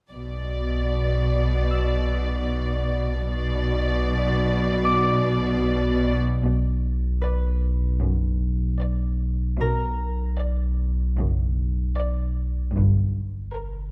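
Mysterious and eerie, this slow 76 BPM suspense film-score cue in B harmonic minor sets a veiled, con sordino violin section singing a narrow melody over dark muted cellos up front and chamber double basses in the background, while a fingerpicked concert harp rings above and an ominous, wave-folded rumbling drone with its own reverb enters at 1.8 seconds, the harmony turning from Bm to Gm at 12.8 seconds in a lightly reverberant space.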